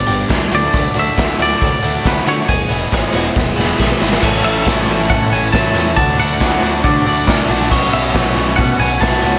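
A raw garage drum kit sits up front in this upbeat, wistful indie rock excerpt at 138 BPM in A major, its punchy kick and medium-tuned snare sounding saturated and gritty with a rolled-off top, and a drum fill arrives at 3.4 seconds. Over it, a twangy, fingered electric guitar carries the melody, clean and compressed, while a bright, picked twelve-string electric guitar with phaser and slapback echo plays a riff in the background. An overdriven electric guitar adds riff work from further back, coloured by lush chorus, slapback echo and tape echo. A growling picked bass, direct and amped with overdrive, anchors the low end. At 4.2 seconds the harmony moves to A, and a very quiet, buzzy vintage combo organ enters with sustained chords, joined moments later by a sparkling, bell-like glockenspiel struck with brass mallets playing a second line. The whole mix has a big arena sound, with moderate lush hall reverb blended with small room ambience.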